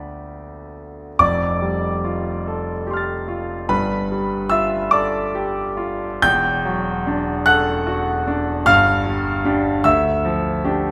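The rhythm moves in a slow, unhurried 6/8 at 48 dotted-quarter beats per minute, with uneven beats and a rubato feel that lets the pulse breathe freely. This short fragment of a longer impressionist solo piano work carries a nocturnal, hazy mood. A concert grand piano plays alone throughout its 10.9 seconds, ranging from deep bass notes at E1 up to A6, its tone clear and natural, with long sustain and an up-front presence. The harmony opens on Dm6, shifts at 1.2 seconds into a longer passage through F69, G9, Em11 and G5, then settles on Dmadd9 at 9.9 seconds. A moderate recital hall reverb surrounds the instrument, lending the chords a soft, lingering glow.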